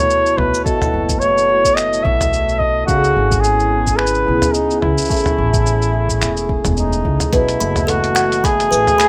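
A jazz-style flugelhorn leads this hopeful folktronica fragment, its soft attack and vibrato set up front with a roomy tape echo trailing the melody. Beneath it, a hammered dulcimer shimmers through ringing arpeggios, also carried on tape echo, while a warbling, detuned pad sustains mellow chords in the background through chorus, phaser and its own reverb. A muffled, pitched-down sampler kit of cabasa, finger snaps, hi-hat and toms sets a lightly swung 4/4 feel, joined by a soft electronic kick and a woody, thumpy pizzicato upright bass. The harmony moves from B7sus4 through C#m7 and Amaj7 before returning to B7sus4, and at 7.3 s a bright, short-plucked kalimba adds a second line with tape echo. The whole passage carries the rough sound of a home demo mix and is cut from a longer piece.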